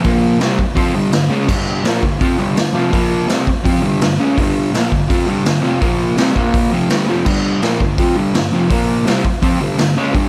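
Raw and lightly reverberant, this swaggering garage rock excerpt at 166 BPM pairs an up-front, double-tracked fuzz guitar riff cycling between Bb5 and G5 power chords, with a brief C5 at 6.2 seconds, against a gritty, saturated drum kit in a bright stone room, its punchy kick, medium-tuned snare, hi-hat and crash cymbal driving a straight 4/4 beat.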